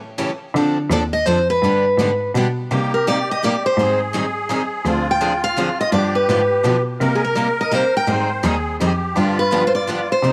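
Acoustic string swing in the jazz manouche style, this bittersweet, virtuosic excerpt moves in a swung 3/4. A bowed cello carries a rich, vibrato-laden bass line from the start beneath two picked steel-string guitars playing accompaniment, one warm and up front, the other set in the background with the sparkle of fresh strings. A third picked guitar takes the melody from 0.9 seconds, and at 2.7 seconds a reedy, shimmering musette accordion enters with a second line as the piece moves into a new section, all within a light reverb.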